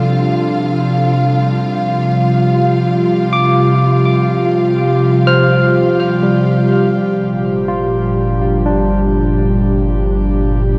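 A straight, unhurried 4/4 pulse carries this melancholic, serene ambient fragment, where an airy, breathy pad with chorus holds sustained chords beneath bright, barky tine electric piano arpeggios coloured by tape echo, a barely audible organ-like drone hums underneath, and a lush bowed violin section glows warmly with vibrato until 7.2 seconds, when a deep, round sub bass enters up front and the harmony moves from Csus4 to Gm7, all bathed in a huge, wet reverb.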